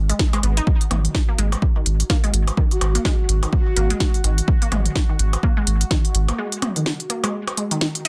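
Minimal techno at 126 BPM in 4/4, cool and clinical, with a light swing on the sixteenths, cut from a longer piece. A punchy, overdriven analog kick sits up front beside a thick, saturated sub bass on G#1 that pumps against the sidechain, while a layered techno kit adds a cracking snare and smooth hi-hats, also overdriven. A squelchy, detuned sawtooth pluck with a resonant filter sweep runs a riff between D#3 and D#4, coloured by chorus, phaser and dub echo, and overdriven percussion blips and toms with tape echo carry the grit of a small room. Deep in the background, a bubbling texture of random resonant filter steps on F#4 hangs in its own reverb and chorus. Between 2.7 and 4.2 seconds a breathy, flute-like lead with vibrato and ensemble chorus holds F#4. The kick drops away at 6.0 seconds and the bass at 6.3, leading into a break from 6.4 seconds carried by the remaining parts in a dense, heavily limited mix with light reverb.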